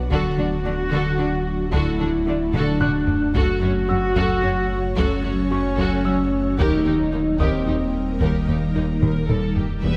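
Tense and vast, this excerpt of hybrid orchestral and electronic film score in 6/8 puts a dark, roomy French horn section up front over an ethereal, airy pad with chorus and tremolo, a deep sine sub bass, lush bowed violas and background cellos, a ringing harp-like synth pluck playing arpeggios through delay, a mellow concert grand piano with delay high in its range, and hard-stick taiko with fills at 2.5 and 9.0 seconds, while violins and double basses slip in only at 9.8 seconds, set in a moderate scoring-stage reverb.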